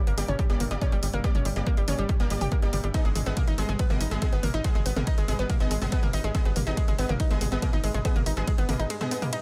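Driving peak-time techno at 141 BPM in a straight 4/4, relentless and hypnotic, built on a dry, up-front electronic kick and a tight, sawtooth sequencer bass pumping against it in G minor shifting to A-flat minor at 2.9 seconds, while a nasal, wave-folded analog pluck riff with chorus, cassette tape colour and delay cycles over punchy analog drum-machine hats, ride and toms, aggressive detuned rave stabs with dub echo sit in the background, an eerie metallic FM drone hovers very quietly underneath, and the bass drops out for a brief break at 8.9 seconds in this dry-sounding cut from a longer piece.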